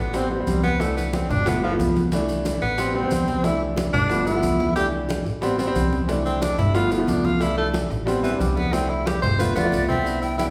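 Afro-Cuban jazz at a lively, danceable 182 BPM in C major, cut from a longer piece, opens with a punchy, close-miked tenor saxophone soloing up front with vibrato and scooped notes over a repeating Am7, C69, G7 progression. A woody upright piano with long sustain and a growly pizzicato upright bass sit alongside ringing congas, very quiet low-tuned bongos and distant, grainy maracas, with a drum fill arriving at 8.7 seconds inside a wet, live-room reverb. A breathy metal flute with unsteady vibrato slips in at 9.6 seconds to take the melody.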